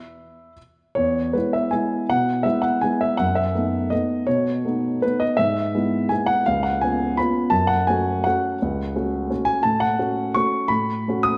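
Graceful and sparkling, this classical piano waltz in E major moves in 3/4 with a flexible rubato feel, its tempo ranging from 141 to 181 BPM. A baby grand piano plays solo from C#2 to E6, sounding intimate and up front, with audible action noise and a natural tone set in a wet recital hall reverb. A lone E5 opens at 0.0 s before the harmony settles on E at 1.0 s, then passes through B7/F#, E/G# and C#7 to F#m, closing on F#m/A at 9.6 s in this brief cut from a longer piece.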